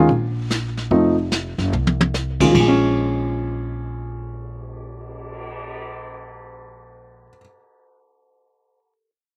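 This jazz piano trio excerpt swings at 146 BPM in Bb minor, with a moody, late-night feel and a dry, close sound. The baby grand piano carries the melody in an intimate, natural voice, its audible action noise and short sustain sitting up front. A woody, thumpy pizzicato upright bass on steel strings plays beneath it. The vintage brush kit is muffled and lo-fi, with dark cymbals, a medium-tuned snare and a punchy kick, and it plays a drum fill around 1.7 seconds. The harmony moves from an F7 colour to Bbm7 at 2.5 seconds, and the drums drop out at 5.7 seconds while piano and bass carry on briefly.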